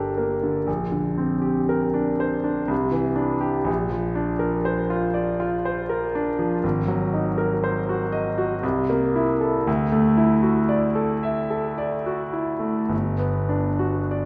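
A rubato triple metre drifts through this mysterious, nocturnal impressionist solo piano fragment from a longer piece, where a clear, polished concert grand with deep bass and audible action noise moves through colored added-note harmonies, heard from further back in a recital hall with a wet, lingering reverb.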